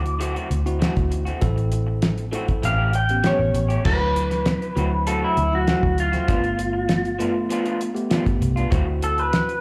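Gritty and laid-back, this straight-eighth soul blues, cut from a longer piece and heard through a club PA, sets a slightly broken-up lead guitar with lush chorus, slapback and tape echo over bell-like tine electric piano, lo-fi guitar stabs, a round foam-muted fingered bass and a cloth-damped, thuddy drum kit with a fat snare and dark cymbals, as the clean guitar solo begins at 3.9 s.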